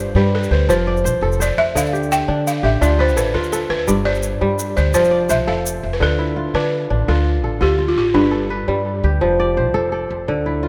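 Set in a flowing 12/8 with a straight feel, this piece of West African string and xylophone music moves at a hypnotic pace and carries a reflective mood. A balafon, struck with soft rubber mallets, leads with a buzzing, airy melody, its solo running through the first 6.0 seconds before it falls silent at 8.8 seconds. Underneath, a crisp, ringing kora sits up front with fingerpicked arpeggios through a touch of delay, while a pizzicato upright bass on steel strings gives a woody, warm foundation. A close, grainy egg shaker adds bright texture through the opening section, dropping away before the second section. The harmony circles between G5, F and Dm chords, and a moderate plate reverb soaks the mix in a dreamy haze, fitting for a passage cut from a longer piece.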